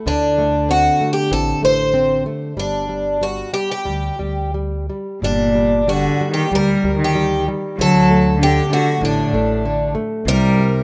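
A fingerpicked nylon-string guitar opens this passionate, mournful fado-style ballad with a classical tone and audible finger squeak. It is joined almost at once by a bright, shimmering parlour twelve-string carrying the octave-doubled picked melody up front and a woody pizzicato upright bass with steel strings, all moving in a loose rubato. At 5.2 seconds a dark, reedy bowed cello with a gut-string, period-style sound and a smooth top comes forward with a second line, all within a rough home demo mix with light reverb and small room ambience, cut from a longer piece.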